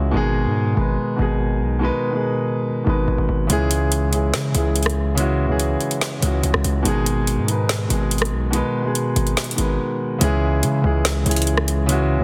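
The excerpt opens on a mellow, filtered baby grand piano, placed up front, and a punchy, hard-hitting 808-style bass, moving from G#m to C#m in a dark, melancholic trap beat at 143 BPM with a half-time feel in C# minor. At 3.5 seconds an electronic trap kit enters with metallic hi-hats, a woody snare and rim clicks, and after a short break at 9.8 seconds the piece moves into a new section on C#m. The sustaining piano and heavy, decaying bass sit in light digital reverb within a dense, heavily limited modern master.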